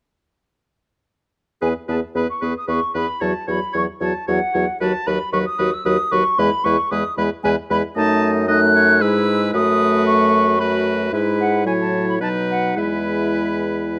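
A quick, graceful classical-period movement for wind quintet in E major and 3/4 at 113 BPM, played with a cheerful, rubato feel in a short excerpt cut from a longer piece. A pure, expressive silver flute with vibrato and a crisp attack carries the melody from 1.6 seconds, over a clear oboe second line, a punchy clarinet accompaniment set in the background, a mellow horn, and a bassoon bass that sits up front. Close, detailed microphones and a light reverb frame the ensemble, with the flute sounding slightly distant and the harmony closing on E at 12.8 seconds.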